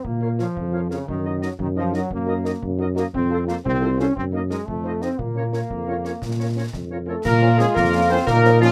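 A bright trombone section holding sustained chords opens this short cut from a longer military-style march for wind band, with a punchy tuba carrying the bass up front and concert bass drum, snare and clash cymbals with dark cymbals sounding close and dry beneath. At 0.2 seconds the trumpet section enters with the melody, its tone dark and distant, sitting in the background with a roomy quality. A woodwind section with vibrato plays a clear second line alongside it, while a mellow French horn section adds soft-attacked, tight accompaniment further back. The music moves in a straight 6/8 with a resolute, stern mood, passing through minor chords to a dominant seventh before settling home. At 7.1 seconds a solo euphonium with light vibrato and a vintage character joins on its own second line, heard clearly through light reverb and close, detailed microphones.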